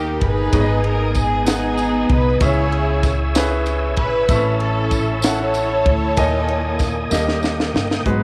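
Fervent and soulful, this slow gospel passage in a straight 6/8 sets an intimate, close string section carrying the melody with light vibrato and a touch of tape echo over brilliant grand piano and a woody, thumpy upright bass up front. A crisp fusion kit with a high-tuned snare and punchy kick enters at 0.2 seconds, and at 0.5 seconds a clean tonewheel organ with key click, chorus vibrato and fast rotary speaker joins with sustained chords alongside a jingly tambourine in the background. Light reverb gives a small-room feel, and a drum fill from 7.1 seconds closes the excerpt as the chords settle from a suspended chord onto D#.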